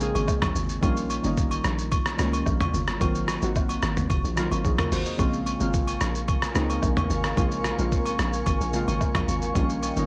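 A straight amapiano groove sets a soulful, hypnotic mood, carried by a lo-fi sampler-style drum kit that sits up front with a thumpy kick, hi-hat, rim click, shaker and toms, all pitched down, muffled and tape-warm as if re-recorded in a small room. Beneath it, a hollow log drum bass bounces with a percussive, quickly decaying FM tone edged by a thin noise layer. Round analog keys built from square and sawtooth waves play the accompaniment through a filter sweep and chorus, moving from Bbm7 through Eb7 to a lush Ab13. Agogo bells and woodblock add a soft, acoustic clatter at a lower level. At 5.2 seconds a glassy, ethereal FM pad fades in with a slow attack, warbling through ensemble chorus and its own reverb while sidechain pumping makes it breathe against the beat. The light room reverb and cassette-home-recording character give this excerpt, cut from a longer piece, a mellow, vintage haze.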